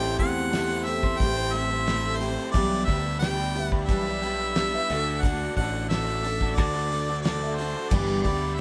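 Nostalgic and jangly, this short folk rock and heartland rock excerpt in G major moves at 89 BPM as an up-front clear harmonica sings the melody with light vibrato and scooped notes over a picked steel-string acoustic guitar, a background grand piano, a very quiet flute-like tonewheel organ through a slow rotary speaker, a crunchy double-tracked overdriven guitar riff, a bright picked electric bass and a dry, dark 70s drum kit with a fat snare entering at 0.2 seconds, all played live in one small room with modest reverb across a chord path of Am7, G6/B, D and G6.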